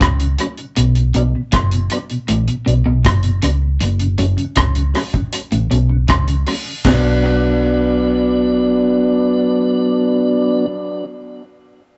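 Opening at once with a dark, round, foam-muted electric bass up front, a dry, deep reggae drum kit with high-tuned snare, tight kick, hi-hat, ride cymbal and rim clicks touched by tape echo, and a slightly broken-up, picked electric guitar riff sitting in the background, this serious, laid-back roots reggae fragment at 79 BPM in B minor moves between F#m and Bm, joined from 0.2 s by a mellow tonewheel organ with key click, vibrato, a slow rotary speaker and tape echo, before the guitar stops at 6.3 s and the drums at 7.0 s, leaving bass and organ in a small, rough rehearsal-room sound with a dulled top end.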